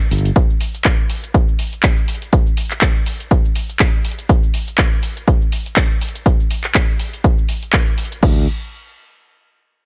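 A swung sixteenth-note groove in four drives this sunny, funky slice of filtered disco house: a punchy, up-front electronic kick lands at 0.4 s beneath a house kit of handclaps, shaker, crash cymbal and warm hats. A bright, growly fingered electric bass, tube-saturated and pumping under sidechain compression, runs through a low-pass filter sweep, sounding briefly at the start and again at 8.2 s as the drums stop. The kick and kit carry a small-room ambience and a tape-warm character in this short cut from a longer piece.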